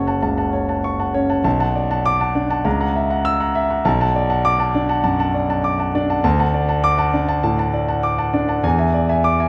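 In a rubato 4/4 around 100 BPM, this sparkling, brilliant excerpt from a virtuoso classical piano study features a solo concert grand, intimate and up front with deep bass and audible action noise, ranging from F#1 to E6 as its harmony moves from F#m through Bm7 and F#7/C# toward D and a closing E7 by 8.6 seconds, all bathed in a wet recital hall reverb.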